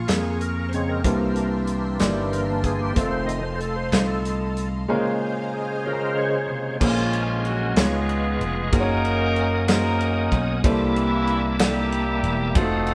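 A reedy, key-clicking tonewheel organ with fast rotary speaker and chorus vibrato solos through the opening section of this fervent, soulful slow gospel piece in 6/8 at 63 BPM in Bb minor, over woody upright piano, lush bowed strings, punchy slap bass, an acoustic drum kit and very quiet, crisp handclaps; at 6.8 seconds the strings stop and a clear, vintage horn section steps up front with the melody, the band playing live in a moderately reverberant stone room.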